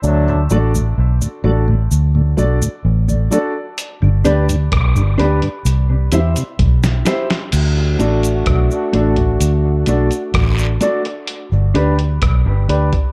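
A straight 4/4 dub reggae groove, laid-back and hazy, opens on a break of round, punchy muted electric bass, cabasa and guiro, a mellow slow-rotary tonewheel organ and woody upright piano stabs with dub echo, until a gritty, compressed sampler-style drum kit with a thumpy kick arrives at 3.8 s, followed at 4.2 s by a chorus-drenched electric guitar in the background, and a clear trombone section with vibrato and dub echo returns at 7.5 s over a dark, lightly reverberant mix.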